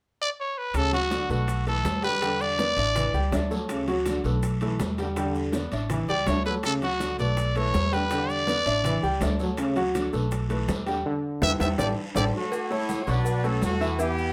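A straight 4/4 salsa groove of background congas, bongos and cowbell, ringing timbales and agogo bells, raspy guiro and grainy maracas drives this joyful, sunny excerpt, with a woody, thumpy upright bass up front and a worn concert grand piano accompanying a gritty, growling trumpet lead, while a punchy trombone section with slapback echo carries a second line and, after a drum fill and band accent from 11.1 seconds, a tight, close-miked horn section takes over the melody at 12.2 seconds.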